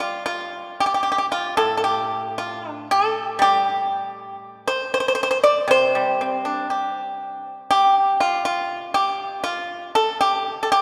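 A solo pipa, played with fingerpicks, sits up front in this short passage of Chinese traditional music, its tone percussive and close. The mood is elegant and serene, moving in a free, rubato feel around 59 BPM in 4/4, rooted in the C zhi mode. The instrument spans from A2 up to D5, and its direct, dry attack keeps each plucked note distinct. The pipa plays alone for the full 10.8 seconds, and the passage is cut from a longer piece. It was recorded in a church or concert hall, where a long, reverberant room sound surrounds the instrument.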